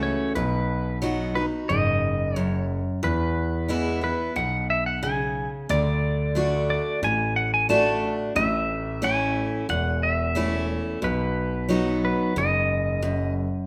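A twangy, fingerpicked pedal steel guitar carries the slide melody with volume swells over a bright, full-bodied picked acoustic guitar, with audible finger squeak, and a dark, mellow grand piano bass with audible action noise, moving through B, E, D, A and back to B in this heartfelt, easygoing country excerpt set in a large studio reverb.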